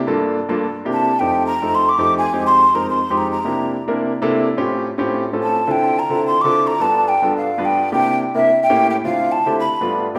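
A lush hall reverb, with a decay of about 1.4 seconds, surrounds this short, lively jazz passage, giving it the open air of a church or concert room. A concert grand piano opens the accompaniment at 0.1 seconds, its deep bass and natural tone sitting up front as it moves through chords such as Gm7, C9, F9 and Fm7. At 0.9 seconds a breathy, mellow metal flute enters with the melody, sounding hollow and distant in character yet placed forward in the blend, with vibrato and tongued notes in its upper register. The harmony turns through an altered A7 before settling into a Dm7 to G9 to C9 progression and closing on A7b9, Dm7 and G7. Straight and danceable in its feel, the passage is cut from a longer piece and ends at 10.2 seconds with both instruments still playing.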